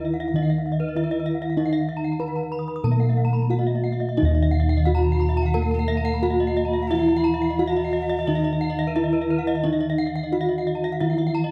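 A ceremonial, brilliant gamelan passage in Eb pelog opens at 0.0 s with everything but the recorder sounding together at 89 BPM in 4/4, its beats falling unevenly. Up front, bossed gongs carry the bass with a round, beating bronze tone, close and dry. Above them a bronze metallophone struck with a wooden mallet rings out the melody, while a second, padded with disc mallets, supplies a mellow, soft accompaniment further back. Two more metallophones played with horn mallets spin bright arpeggios in the high register, one close and full, the other airy, and the paired tuning across all four metallophones gives their ringing a shimmering beat. From 5.0 s to 9.6 s a breathy alto recorder adds a faint, hollow second line with vibrato and a crisp, chiffy attack. The dark production sits in a moderate recital-hall reverb, and the recording is cut from a longer piece.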